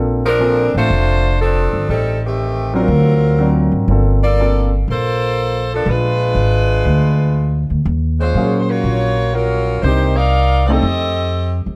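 A clear saxophone section carries the melody up front in this joyful, swinging big band jazz fragment, entering at 0.3 seconds and playing as an ensemble. It moves at 121 BPM in 4/4 with a swung eighth-note feel, set in Bb major and tuned to A4 = 445 Hz. Beneath it, a woody pizzicato upright bass with steel strings sits close and prominent, anchoring the low end throughout. A warm upright piano supplies accompaniment, playing until 4.7 seconds and returning at 8.4 seconds. The harmony is rich and colourful, moving from Bbmaj9 through altered dominants and minor elevenths such as Ebm11 before settling on F9. Close, detailed miking captures the players within a moderate large-studio reverb.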